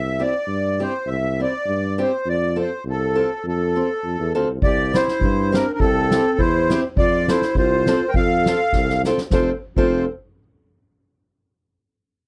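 A dry, close recording with a 1970s studio character opens on a festive, bouncy alpine dance tune in F major, taken from a longer piece at 102 BPM in a swung 2/4. Up front, a reedy, sweet accordion with light tremolo tuning and a slapback echo carries the melody, while a warm tuba with light vibrato and a roomy tone holds down the bass. From 0.2 seconds a boxy, fingerpicked acoustic archtop guitar adds accompaniment, with finger squeaks audible. At 4.6 seconds a clear clarinet with a soft attack and smooth top enters in the background on a classically styled second line, joined by a drum kit played with soft mallets, featuring dark cymbals, a medium-tuned snare and a boomy kick. The harmony moves between C and F, and a drum fill at 8.7 seconds leads into a brief closing section.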